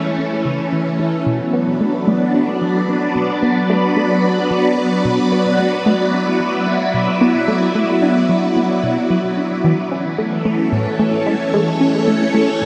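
A huge, reverb-soaked space surrounds this short fragment cut from a longer piece of ambient, sequencer-driven space music, its long 8.4-second decay giving the mix a dreamy, floating quality. In B minor at 111 BPM in a straight 4/4, the mood is mysterious and cosmic. A vintage, bright string machine sits up front from the opening, holding sustained chords with a slow attack, its ensemble chorus and phaser lending a swirling shimmer. From 0.2 seconds a tight sequenced synth drives a riff beneath it, its detuned sawtooth and triangle tones shaped by a fast, plucky filter attack and softened by chorus, phaser and delay into something mellow. A filter sweep runs across this synth arpeggio throughout, while the harmony moves from A to B minor at 1.3 seconds and back to A at 9.9 seconds.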